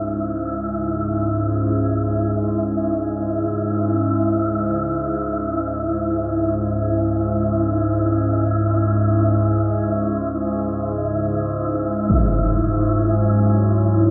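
Dark ambient drone in free time, unsettling and desolate, with a calm, organ-like drone held low and up front, its ensemble chorus and phaser shimmering under a filter sweep, while an airy, breathy wind-like tuned noise texture hangs above it from the start. At 12.1 seconds a huge, bright impact lands through a low-pass filter, and at 13.5 seconds a deep, moody pad of detuned sawtooth tones with a sub octave enters in the background just before this fragment of a longer piece cuts off. Everything sits in a vast, wet reverb with a long tail.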